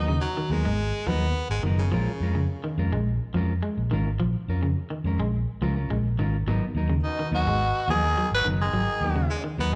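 Heard as a live gig through a club PA with light reverb, this intense, funky afrobeat excerpt rides on a round, amped fingered bass up front, a dark, clean semi-hollow guitar playing stabs with slapback echo, and a twangy, slightly broken-up electric guitar picking arpeggios throughout. A bright baritone saxophone with light vibrato carries a second line near the start. Around 7.0 seconds a raspy, growling tenor saxophone takes the melody up front, with a punchy, forceful trombone on a second line in the background, and all three horns carry slapback echo.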